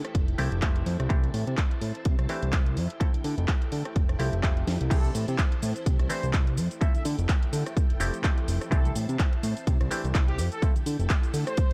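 Filtered disco house at 126 BPM in C major with a feel-good, joyful swing, cut from a longer piece, where a lush string machine holds chorused chords over a fat, nasal analog bass, a punchy overdriven electronic kick, a house kit with cracking snare, handclaps, hats, shaker and crash, and a twangy muted clav through a phaser, everything but the kick pumping under a filter sweep until a drum fill at 4.7 s drops into a section where a smooth-topped horn section with light vibrato, sampler grit and delay carries the melody over Fmaj9 and C6 changes in a dark, dry mix.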